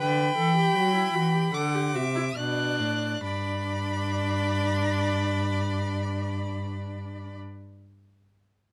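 This is a short classical excerpt in baroque style, a fugue for string quartet in G major with an elegant, stately bearing, moving in 4/4 at roughly 67-81 BPM and slowing down over its first 3.2 seconds. All four bowed players sound together from start to finish, with the first violin carrying the melody high in its range, from B5 to F#6, sung with vibrato, portamento and expressive shaping. Beneath it the second violin holds a smooth, even line that sits a little distant in the blend, while the viola fills in the accompaniment with its own vibrato and gliding portamento. The cello anchors the bass from G2 to F#3, close and up front, its tone warm and softly attacked, and it stands slightly louder than the upper strings. The harmony moves from G/D to D7 and settles on G at 3.2 seconds, where a new section begins, and the dry, closely miked sound lets every bow stroke register in fine detail.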